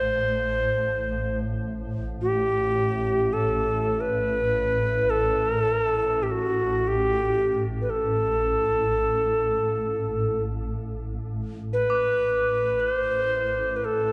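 Drenched in a long church reverb, this meditative world excerpt unfolds as spacious, unhurried music. A bright, airy cedar flute carries the melody up front with a straight, tongued tone trailed by a diffuse ambient delay, while a swarming, detuned drone sustains low beneath it, slowly evolving with a tense, granular texture and its own reverb. Soft crotales struck with hard rubber mallets add high, bell-like ringing at the start until 3.6 seconds, then return from 11.9 seconds.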